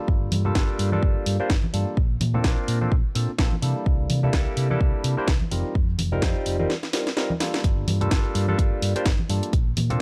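A swung 4/4 groove drives this sensual, funky filtered disco house excerpt, with a punchy, up-front electronic kick and a house kit of cracking snare and warm hats, a close tube shaker and congas tucked in the background, a dark, round hollow-body fingered electric bass pumping under a low-pass filter, and a barky, lightly overdriven tine electric piano with phaser and filtering cycling through Gm9, Bbmaj7, C13 and F7sus4, all set in a gritty, cassette-tinged sound with a drum fill at 6.7 seconds.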